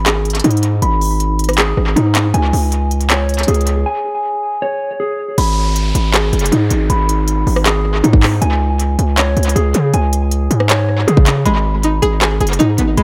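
Set in a light, digitally ambient space with echo saturating the mix, this excerpt from a longer trap piece feels menacing and melancholic, moving at 158 BPM in 4/4 with a half-time feel in G# minor. A dark, clean electric guitar plays compressed, fingered arpeggios through tape echo, while a distorted, saturated 808-style bass sits heavy and up front beneath it. The electronic trap kit is also forward in the mix, with a hard-clipped kick, crisp hi-hats, handclaps, rim clicks and crash cymbal, its hits trailed by tape echo. After a break at 3.9 seconds, the second section arrives at 5.4 seconds with an electronic downlifter sweeping through, and the harmony keeps alternating between G#m and C#5. At 11.5 seconds a bright, twangy, string-like resonator pluck joins as accompaniment, colored by chorus, a filter sweep and tape echo.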